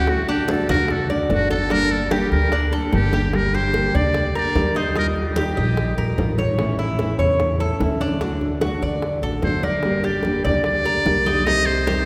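A straight, danceable 4/4 groove from a Cuban son and guajira piece rests on very quiet, high-tuned bongos, ringing congas and a thumpy, woody pizzicato upright bass with gut strings. Up front, a buzzy, thin trumpet with a metal mute plays a jazz-style solo with light vibrato and scooped notes, dropping out at 6.4 seconds and returning at 9.4 seconds, while a full-bodied, fingerpicked nylon-string guitar accompanies and a metallic, double-strung Cuban tres adds picked arpeggios. The recording sits in a church or concert hall with a long, wet cathedral reverb that gives it a warm, spacious glow.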